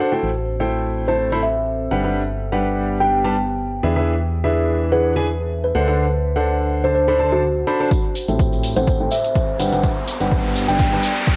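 Soulful and bittersweet, this piano house excerpt opens on a clear, intimate grand piano riff with audible action noise, shaped by sidechain pumping, a low-pass filter and analog delay, over a woody, mellow kalimba melody, a hollow, organ-like FM bass and a warbling, detuned, lo-fi pad with a nostalgic tone that sits dark in the background. At 7.9 s a build-up with a filter sweep begins as a punchy electronic kick, a tape-warm hi-hat and shaker, and a tambourine in the background enter, and an electronic riser joins at 9.1 s. The home cassette recording carries a moderate spring reverb with studio ambience.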